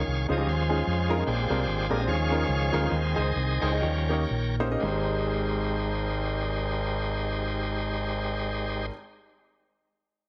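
Gospel in Ab major, reverent and uplifting, with a swung 4/4 feel between 113 and 150 BPM: a bright, shouting tonewheel organ, lightly overdriven through a fast rotary speaker, takes a solo of sustained chords from 0.0 to 4.8 seconds as the tempo slows from 1.3 seconds, while a clear concert grand piano with audible action noise and long sustain accompanies, and a round, punchy fingered electric bass sits up front, all in a moderate echo-chamber reverb.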